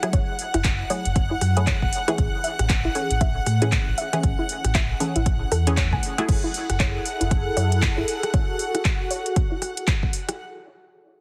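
A punchy, up-front electronic kick drives this moody, late-night deep house excerpt at 117 BPM in F# minor, joined by a house kit with metallic hats, a deep sine sub bass, a soft, round background pluck with chorus and dub echo under a filter sweep, a detuned sawtooth dub chord stab with phaser that drops out at 6.5 seconds, a rich, intimate violin section played sul tasto, and a smooth analog pad entering at 6.3 seconds. The harmony moves from F#m9 to Amaj7 and back to F#m9, with sidechain pumping on the melodic parts and a heavily compressed radio-like ambience.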